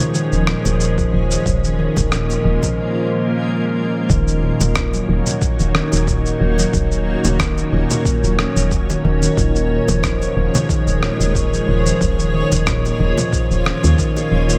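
Organic downtempo with a hypnotic, mystical mood, this excerpt from a longer piece moves at an unhurried, lightly swung pace. A close-miked handpan sits up front, ringing out bright, meditative arpeggios shaped by sharp finger strokes and a tape echo, with a filter sweep on it through the opening 4.1 seconds. Beneath it, a cloudy granular pad holds blurred, detuned chords that breathe with sidechain pumping and trail off in its own reverb. A gritty, sampler-style shaker and rim click come in at 0.1 seconds, and a woody, round FM bass enters at 0.3 seconds with soft, decaying notes, joined by very quiet acoustic congas and bongos in a small room. A compressed, thumpy electronic kick from 1.0 seconds adds further tape-flavoured grain, while the echo-heavy mix keeps the whole groove drifting between a few slow chord changes.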